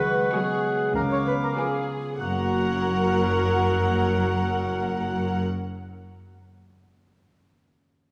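A wet scoring-stage reverb with a small-room ambience surrounds this short, magical film cue, cut from a longer piece and moving at 97 BPM in a straight 4/4 in F# major. A delicate, bell-like small celesta with a vintage, band-limited tone carries the melody from the start, sitting in the background until it closes at 6.0 s. It is joined at 0.3 s by a close, intimate violin section played sul tasto with light vibrato and a soft attack. A bright, ringing harp plucked with the thumb runs arpeggios underneath and lingers to 6.3 s. Around these, an airy metal flute, a smooth-topped oboe, a solo clarinet and a dark, woody violin section weave second lines. A very quiet French horn section holds sustained chords, a rich, even viola section fills the accompaniment, and a lush, focused cello section and an intense, clear double bass section anchor the bass. The harmony leans on C#7sus4 and C#7b9 before settling onto F# at 2.2 s, giving the quirky, whimsical cue a feeling of arrival.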